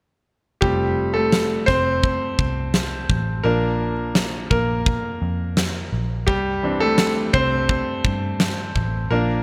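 Piano-driven pop with an anthemic, hopeful mood, cut from a longer piece, where a clear, smooth concert grand carries the harmony from F through Bb to Cadd9, entering together at 0.6 seconds with a dark, round, foam-muted picked electric bass. A huge arena drum kit sits up front with a fat snare and punchy kick, dropping out at 8.9 seconds while the piano and bass continue. Moderate plate reverb and small room ambience frame a bright 1980s-style digital production.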